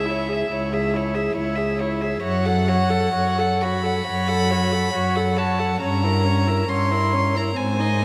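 Rubato phrasing over a slow 4/4 pulse of 68 BPM carries this elegiac, solemn fragment of a romantic string quartet movement through C#m, F#m and Gdim7. A pure, distant first violin floats the melody high above, while the second violin sings an intimate, airy-bowed line with light vibrato, and a rich, floating viola fills the accompaniment, all bowed softly sul tasto. Up front and close, a warm cello anchors the bass, and the whole quartet sits in a vast, echoing cathedral reverb with a long 6.1-second decay.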